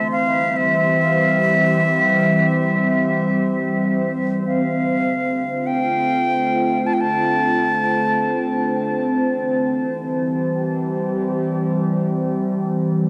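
Ambient piece in free time and D minor, spacious and hazy, where a pure, straight-toned concert flute sings a melody up front between E5 and A5 with dub echo until 9.0 s, over a warbling, detuned, nostalgic pad holding sustained chords from C to Dm7 and back to C with chorus and phaser through 13.1 s, all set in a dark, warm production with echo chamber reverb and small room ambience.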